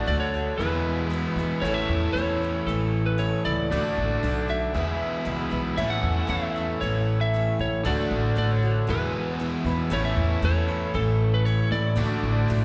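Jangly and nostalgic, this rock excerpt puts a double-tracked, overdriven semi-hollow guitar riff and a thumpy, gut-strung pizzicato upright bass up front, while a slightly broken-up, compressed lead guitar carries the melody over a bright, boxy swing-style acoustic guitar, a very quiet vintage upright piano and a very quiet, clean tonewheel organ through a rotary speaker, set in the wet reverb of a church or concert hall.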